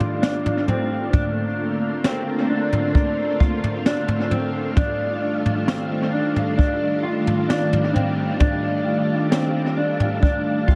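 Ethereal and dreamy, this short dream pop excerpt drifts at 66 BPM in a straight 4/4, cut from a longer piece. A vintage, organ-like ensemble string part holds soft-attack sustained chords with a warbling ensemble chorus, moving from F13 to Bbmaj9 at 1.1 seconds and back to F13 at 4.8 seconds. Over it, a mellow, clean electric guitar plays fingered arpeggios, its dark tone colored by lush chorus and analog delay. A jazz brush drum kit sits up front with a boomy kick, high-tuned snare and toms, its smooth, rolled-off top carrying its own analog delay. Moderate spring reverb with a long 2.6-second tail gives the echo-heavy mix a hazy, floating depth.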